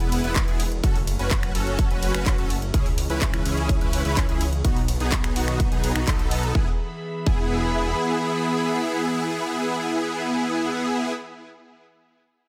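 Lightly reverberant, this anthemic, euphoric festival progressive house drop at 126 BPM in E major sets huge, bright supersaw chords up front with chorus and delay over a thick, mellow detuned saw bass, a punchy electronic kick running from 0.4 to 7.4 seconds, a house kit of finger snaps, handclaps, hi-hat and ride cymbal, and distant, floating bowed strings holding sustained chords, with the strings, supersaws and bass all pumping to the sidechain and a band accent at 6.1 seconds before the progression returns to E.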